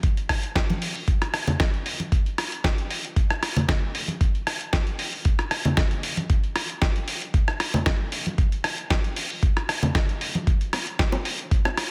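A thumpy, gritty electronic kick drum sits up front and drives this short nu-disco excerpt at 115 BPM in 4/4, with a light swing on the sixteenths giving it a groovy, feel-good bounce. Alongside it, a dusty soul drum kit with a sampler-style character supplies hi-hat, rim click and a medium-tuned snare, compressed and re-recorded in a small room for a close, lived-in texture. Bright, saturated congas and bongos join at 0.7 seconds, adding acoustic color over the beat. A light reverb surrounds the whole mix, and the passage stays in a single section running to 11.9 seconds, cut from a longer piece.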